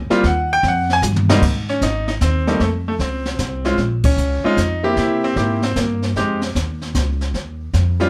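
Sophisticated and warm, this short cut from a longer jazz piano trio performance swings in 3/4 with a club-like ease. A bright grand piano carries the melody up front, its brilliant, natural tone ringing out across a generous range, and it takes a solo through the opening 1.4 seconds. An acoustic upright bass anchors the low end with woody, pizzicato lines on steel strings, while a brushed drum kit sits distant and roomy, with a high-tuned snare, punchy kick, hi-hat, toms and crash cymbal. The drums play a fill from 1.0 to 1.4 seconds, and the whole band hits an accent at 4.0 seconds. The harmony moves through rich jazz colours, from a rootless major seventh through minor added-ninth and dominant chords to a suspended close, all set in a moderate club ambience.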